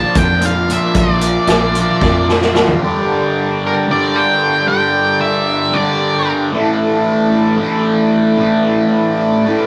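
In a straight 7/8, this mysterious, dark psychedelic rock fragment sets a double-tracked, phaser-tinged fuzz guitar riff and a reedy, breathing hand-pumped harmonium under an octave-fuzz lead guitar melody that stops at 6.3 s, while a punchy vintage drum kit with a rolled-off top, round fingered electric bass and faint, damped congas carry the opening until a drum fill leads into the chord change at 2.8 s, captured in a rough rehearsal-room sound with tube saturation and wet reverb.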